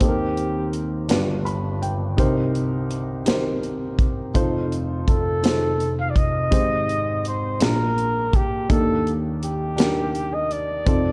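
Uplifting and hopeful, this slow gospel excerpt in 6/8 at 55 BPM sets a woody, slightly detuned upright piano with audible action noise, which adds a fill at 1.1 seconds, beside a punchy acoustic drum kit of hi-hat, kick and medium-tuned snare, while a dark, roomy jazz-style trumpet with light vibrato sounds briefly at the start and returns at 5.1 seconds for a solo over chords moving from Eb6 through Cm7 and F7 to a closing Ebmaj7, all in a small room with light reverb.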